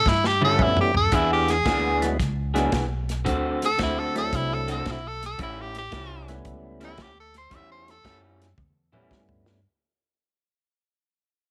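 Soulful and laid-back, this electric blues shuffle fades out from start to finish as an edgy, forceful tenor saxophone carries the jazz-style melody up front with vibrato and a slapback echo until 8.2 seconds. A twangy, slightly broken-up guitar riff through a small old amp and a fat, lightly overdriven tonewheel organ with percussive attack and a slow rotary speaker fill out the A7, E7 and D7 changes. Beneath them, a woody pizzicato upright bass and an airy acoustic drum kit with a punchy kick keep the swing going, with drum fills at 0.1 and 8.6 seconds, all in a small room ambience.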